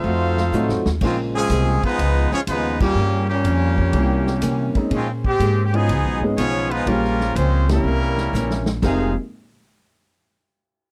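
A swung 123 BPM big band groove in F minor carries this brassy, sultry jazz excerpt, where a brilliant trumpet section with light vibrato leads over a dark, vintage trombone line, a woody, thumpy upright bass sits up front, a very quiet boxy picked guitar and an intimate concert grand piano entering at 0.5 seconds fill in the harmony, and a big-band drum kit with dark cymbals and a punchy kick adds fills while the full band hits accents, all in a dry, close 1970s-style studio sound.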